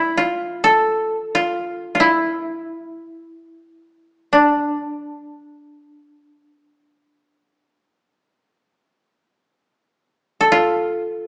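Heard through a small-speaker sound in a moderate recital-hall reverb, this still, austere passage of Japanese traditional chamber music, cut from a longer piece, is a solo koto in free time and D hirajoshi, played with fingerpicks and placed up front with a dry, woody tone across its 11.3 seconds.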